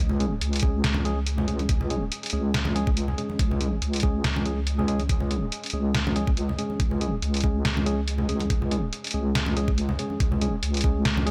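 A swung, half-time deep dubstep groove, dark and heavy, is driven by a knocking, layered electronic kick and a gritty, pitched-down sampler-style kit of hi-hat and snare up front, with distant congas echoing in the background, clean tine electric piano stabs trailing dub echo, and a deep, detuned wobble bass thickened by chorus and tube saturation, all in a dry mix cut from a longer piece.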